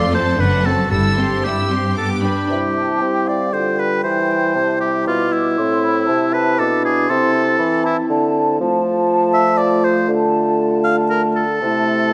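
A quick, graceful and spirited classical-period orchestral movement in 3/4 at 118 BPM with a rubato feel, opening in C major with lush bowed strings, as violins carry the melody over background second violins, smooth violas, and cello and double bass, then handing off at 2.5 s to airy flutes, a distant bassoon and sustained mellow French horn chords, while a clear, up-front oboe line threads through the whole passage before the harmony turns to F major at 8.6 s, all in a moderate scoring-stage reverb.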